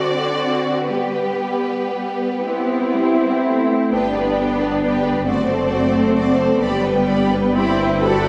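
Swaying in a rubato 6/8, this slow romantic movement for string orchestra unfolds with a serene, tender calm. A violin section carries the melody with soft attacks and expressive vibrato, yet it sits in the background, while a second violin section plays a focused, distant-sounding second line placed up front. Beneath them, the violas supply smooth, even accompaniment, and the cellos hold the bass with only light vibrato. The double basses join at 3.9 s, deepening the low end with a lush, bowed tone as the second section begins. The strings bloom in a reverberant church or concert hall, and the passage is cut from a longer piece.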